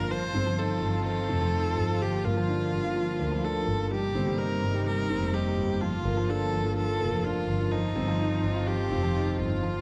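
A clear, focused solo viola carries the melody up front, its close vibrato threading through this short, moving and hypnotic piece of piano and strings electronica in a straight 4/4. Alongside it, a dark baby grand piano repeats a mellow, smooth riff with a vintage character and long sustain. A bowed double bass section sits up front too, expressive and dusky with its own vibrato, anchoring the low end. Further back, a chamber string section holds sustained chords with a reedy, gut-string, period-style tone and light vibrato. The harmony circles through F7/G, Gm7, Eb6/G and Bbmaj7/G before returning to F7/G. All four parts enter together at the start and play on until the excerpt's close, between about 9.5 and 9.8 seconds. A moderate concert hall reverb lends a sense of space to a dark, warm production.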